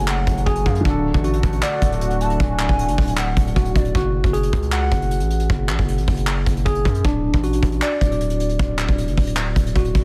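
A dark, brooding half-time trap fragment in F# minor at 155 BPM opens on a smooth gliding portamento lead with chorus and digital delay, set over a mellow, vintage baby grand piano and a deep, detuned ambient pad in the background; these three stop near 4 seconds, while a tine electric piano with medium tremolo, played through a combo amp, keeps up its arpeggios, a saturated, aggressive 808-style bass sits up front, and a soft brush kit with tight kick, hi-hat and handclaps enters at 0.1 seconds in a dense, vinyl-crackled studio mix.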